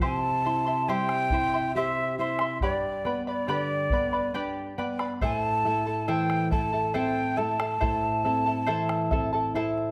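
Wistful and melancholic, this Andean folk fragment sways in an unhurried three-beat metre with a straight feel. An airy cane quena carries the melody up front, its straight tone opening each note with a crisp chiff, and it falls silent at 9.5 seconds, just before the others finish. Beneath it, a fingerpicked charango adds a shimmering shimmer of double strings, some doubled at the octave, while a thumb-plucked nylon-string guitar supplies a full-bodied, deep classical foundation. A bombo sits close and dry at the bottom, its deep, dark tone present throughout. The harmony moves from C to G and settles on A minor, and a moderate recital-hall reverb gives the ensemble a gentle sense of space.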